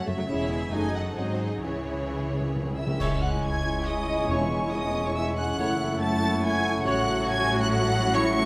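Classical orchestral music in a fast romantic vein, this short passage cut from a longer movement moves at 139 BPM in a rubato 3/4 in C# minor, dramatic yet lively and cheerful in mood. A rich, focused chamber violin section carries the melody high above a lush, expressive second violin line, while a concert harp rings out arpeggios and background violas, warm cellos and distant double basses fill out the accompaniment and bass with smooth, even bowing. A dark, roomy French horn section holds sustained chords from 0.3 seconds, when dark cymbals, a cymbal swell and concert bass drum also enter, and hard-mallet timpani on calf heads play a fill that leads into a full ensemble accent at 3.0 seconds. At that point the woodwinds join: a clear, vintage-tinged solo oboe, a mellow clarinet and a pure, straight-toned flute section add second lines, a soft-attack bassoon supports the accompaniment, and a clear trumpet punctuates with stabs. 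The harmony moves through C# minor, a diminished chord and G#7 before settling toward F# minor colours, all set in a moderate recital hall reverb.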